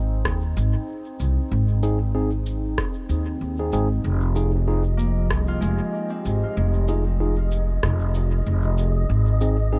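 A warbling, lo-fi pad with chorus and phaser sustains chords over a woody, growly pizzicato upright bass up front, opening this deep, meditative ambient dub excerpt with a gentle 16th-note swing. A deep, tape-warm electronic kick and a small-room rim click and cabasa with dub echo arrive at 0.3 seconds, and a mellow, clean tine electric piano adds echoing stabs from 1.8 seconds. An airy, breathy wind-like noise texture drifts in at 4.6 seconds, soon joined by ringing, fingerpicked Celtic harp arpeggios trailing dub echo.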